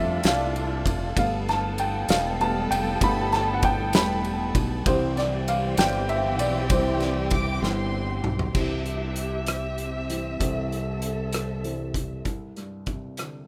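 A swaying 6/8 lilt at 65 BPM carries this tender pop ballad in C major, where a woody upright piano takes the lead over bowed studio strings rich with vibrato and portamento, a bright, punchy fingered electric bass and a loose acoustic drum kit with a fat snare and punchy kick in a pumping small room, until a brief, biting chamber violin line with delay at 7.3 seconds and a drum fill at 7.6 seconds lift the passage toward a closing Csus2 in this rough home-demo excerpt.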